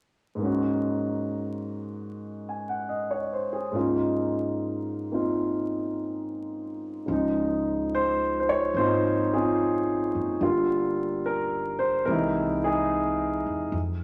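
A warm, up-front grand piano opens this late-night, intimate jazz ballad at 0.3 seconds, carrying the accompaniment at a slow 72 BPM in Db major with a swing feel, moving from an Ab7sus4 to a Db69/Ab voicing. At 7.1 seconds a woody, thumpy pizzicato upright bass with a dark gut-string tone enters low in the mix as the harmony shifts through Dbmaj9, Gm7 and C7alt. A wet studio reverb and vinyl crackle frame this intimate excerpt, cut from a longer piece, which ends at 14.0 seconds.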